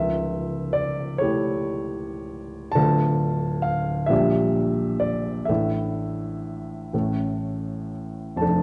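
A dark, warm recording places a baby grand piano up front in a moderate scoring-stage reverb of about 1.5 seconds, its tone natural and its notes short in sustain. This is a melancholic, yearning Romantic nocturne for solo piano, an 8.6-second fragment cut from a longer piece, moving in 6/8 at a slow 36 to 48 dotted-quarter beats per minute with a free, rubato feel. The piano is tuned to A4 = 441 Hz and reaches from C#1 in the bass up to A5. The harmony opens on A7 over C#, settles onto D minor at 2.8 seconds, passes through G minor over B-flat, then leans on Asus4 before resolving to A at 6.9 seconds. The subdued top end and moderate room keep the mood intimate and wistful.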